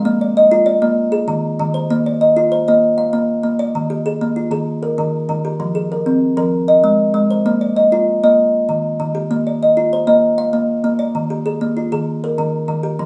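Rippling and warm, this short cut from a longer southern African traditional piece moves at 130 beats per minute, counted in dotted quarters within a straight 12/8 metre. A lone kalimba carries everything from 0.0 to 13.1 seconds, its thumb-plucked tines ringing out from Eb3 up to F5 in Bb mixolydian. The instrument sits up front with a woody, hollow-box tone and an airy shimmer on each plucked note. The harmony cycles through Bb, Eb, Fm and Ab, with an Ebsus4 colouring the opening moments before the main passage settles in at 1.9 seconds. A modest small-room reverb and the rough ambience of a home demo give the recording an intimate, unpolished feel.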